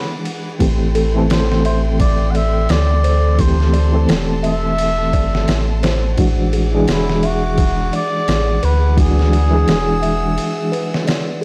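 Dark and melancholic, this trip hop excerpt sets a veiled, cup-muted trumpet melody with tape echo and 12-bit grit over a reedy electric piano with fast tremolo, a deep round sub bass up front, a gritty, overdriven sampler-style drum kit of thumpy kick, snare and ride, rich bowed chamber strings in the background and a delicate, tinkling music box arpeggio, all moving between E9 and Am7 in a dry, small room flecked with vinyl crackle before a break at 10.4 seconds.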